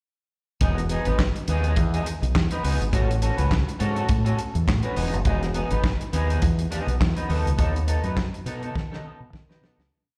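A fingered electric bass sits up front, playing a syncopated disco line with a warm, direct and amped tone that drives this short, celebratory piece. Alongside it, also up front, a soul drum kit lays down a four-on-the-floor beat with sixteenth-note hi-hats and a snare layered with handclaps, its sound dry, dark and smooth, with a tight kick and a rolled-off top. Further back, an electric guitar through a small old amp plays choppy sixteenth-note disco chords, twangy and slightly broken-up, coloured by analog chorus and slapback echo. The lightly swung groove moves through Emaj7, A6 and B7 in a joyful mood, with a fade-out beginning at 7.6 seconds and a drum fill arriving at 8.7 seconds before the close at 9.9 seconds. The whole performance sounds like a live gig heard through a venue's PA, with recital hall reverb and small room ambience around it.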